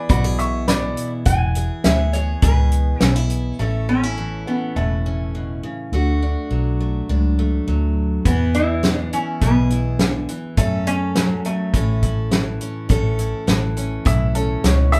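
Sunny and easygoing, this honky-tonk and classic country excerpt moves at a straight 103 BPM in A major, with a nasal, metallic lap resonator guitar carrying the slide melody on fingerpicks from 1.3 s to 12.6 s. Underneath, a full-bodied dreadnought acoustic guitar plays its picked accompaniment with audible finger squeak, a dark, foam-muted vintage electric bass sits round and punchy up front, and a natural country drum kit with a fat snare and punchy kick drops away briefly before returning at 8.3 s. A brilliant, woody upright piano adds a short second line at the opening and comes back at 14.1 s to close out the passage, all captured as a band playing live in a small room with a noticeably wet reverb.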